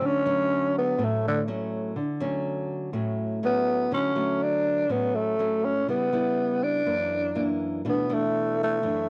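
Bossa nova with a romantic, sunny mood, this short cut from a longer piece puts a growling tenor saxophone up front, breathy and raspy with subtone, vibrato, soft attacks, scooped notes and a smooth top, soloing in jazz style over the first 3.9 seconds with plate reverb. A small, warm, fingerpicked nylon-string guitar accompanies throughout, and both parts carry a cassette-tape tint from a home recording made in a wet, booth-like room.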